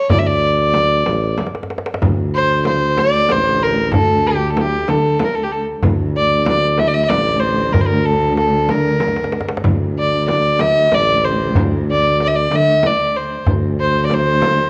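Longing and soulful, this Persian modal ensemble excerpt in 6/8 places a dark, nasal, gut-string violin up front on the melody, over a mellow tuba bass with scooped notes, a close tombak and a large, deep frame drum in the background, with drum fills at 1.4 and 9.0 seconds, while a rich cello drone with vibrato and portamento enters at 2.0 seconds, the whole recording set in moderate recital hall reverb and colored by the warbling pitch drift of worn cassette tape.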